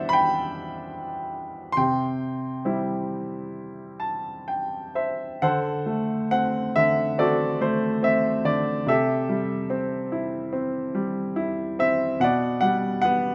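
Set in a moderate recital hall reverb, this calm, lyrical classical excerpt features a clear, up-front baby grand piano playing solo from B2 to C6. It moves with a rubato feel in 4/4 at roughly 62-75 BPM, drifting through Em7/B, C, D7 and Am7/C before settling on a rootless Em9/B at 12.2 seconds. A piano fill from 3.5 to 5.4 seconds bridges the opening phrase into its restatement.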